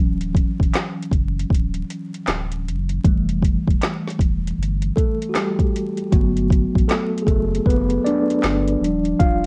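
A dark, lightly reverberant production dusted with vinyl crackle frames this mellow, dreamy lo-fi hip hop fragment at 78 BPM with a 16th-note swing, where an up-front tine electric piano, clean and heard as if through built-in speakers with a cassette-tape tint, carries the chords from Dmaj9 through Fmaj9 and Gmaj9 to Ebmaj9 over a round, sustained sine sub bass and a layered deep house drum kit of deep kick, woody snare, metallic hi-hats and handclaps roughened by vintage 12-bit sampler grit.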